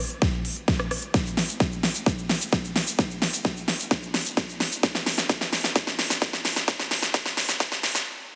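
A huge-snared big-room dance drum kit, with crisp hats, cabasa and rim clicks, drives this powerful, emotional festival progressive house build-up at 130 BPM in a straight 4/4. A punchy, layered electronic kick sits up front beside it, both parts tape-warm and produced, while a drum fill and a filter sweep run through the whole build until the music stops at 8.1 seconds. A lush hall reverb wraps the drums, and the dense, heavily limited master gives this short cut from a longer piece a modern, high-pass-filtered sheen.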